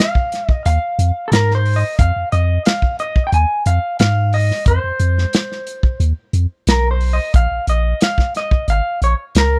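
This straight-eighth soul blues excerpt sets a smoky, soulful mood in a steady 4/4, drawn from a longer piece. An electric guitar through a small old amp carries the melody from the opening moment, its tone slightly broken-up, twangy and compressed, fingered up front with a slapback echo trailing each phrase. Alongside it, a soul drum kit of hi-hat, kick and snare sits in a tight booth with a pumping room sound, its medium-tuned snare and tight kick given a rolled-off top. A deep, punchy sub bass enters at 0.7 seconds, its sine-like notes carrying a pitch-drop attack and a mellow, sustained body that sits prominently in the mix. The harmony rests on F minor before shifting to B-flat minor at 7.3 seconds, all wrapped in a studio ambience.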